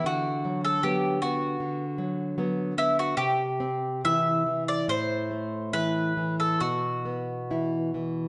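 A round, picked mandolin carries the melody up front in this short excerpt from a romantic duo, its double strings singing a melancholic, elegiac line over a rubato pulse of about 66-78 BPM in 4/4, tuned to A4 = 437 Hz. Beside it, a bright, fingerpicked classical nylon-string guitar with fresh strings and audible finger squeaks supplies the accompaniment, moving through Bm/D, C, Am and a closing Bsus4. Both play throughout the 8.3 seconds in a moderate recital hall reverb, with the high end rolled off above 10.8 kHz.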